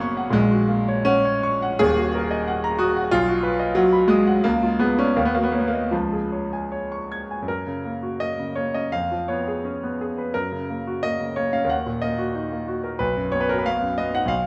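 A clear, smooth grand piano with a vintage tone and short sustain sits up front in a moderate recital hall reverb, playing alone from 0.0 to 14.5 s across a range from D#1 to G#6. This lyrical, hopeful romantic character piece in F# major moves in 2/4 with a rubato feel between 76 and 95 BPM, its opening phrase passing through D#m, B and C# before a new section begins at 7.5 s on F#. The excerpt, cut from a longer piece, closes on a B chord after turning through C#7/E# and D#m.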